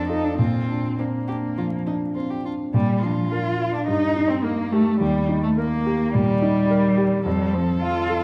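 Stormy and dramatic, this quick classical-period movement for piano trio moves with a rubato feel, the violin carrying a smooth, even melody with close vibrato while the cello shapes an expressive second line with vibrato and portamento. A clear, natural grand piano accompanies up front, moving from Bb through Eb to F as the opening passage gives way to a longer second section at 2.7 seconds. The recital hall reverb and dark, warm production are dusted with vinyl crackle, and the fragment is cut from a longer piece.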